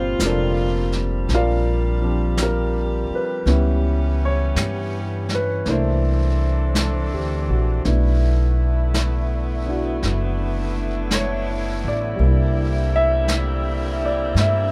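A woody, pizzicato upright bass sits up front in this tender, intimate jazz ballad excerpt, moving slowly at 55 BPM in 4/4 with a swung eighth-note feel. An upright piano with long sustain accompanies a tight saxophone section that holds soft-attack chords with vibrato and a smooth top, while a brushed drum kit with a rolled-off top enters at 0.2 seconds on snare and hi-hat. The close, dry sound keeps every detail near as the harmony drifts from Gm9 through C#m7b5 and C13 to Bm7 and C9.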